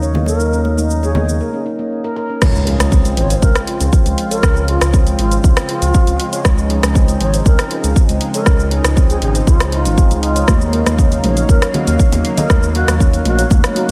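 Afro house with a spiritual, warm mood, in which a detuned analog pad with chorus, ringing stainless-steel handpan arpeggios with delay and a smooth gliding, tube-saturated synth bass all pump to the sidechain while a breathy, distant bamboo bansuri carries the melody, congas sit in the background and a tape-colored house kit of hi-hat, rim click, shaker and crash fills out the groove, until after a short break a punchy, up-front electronic kick lands at the drop at 2.4 s with a very quiet impact just behind it.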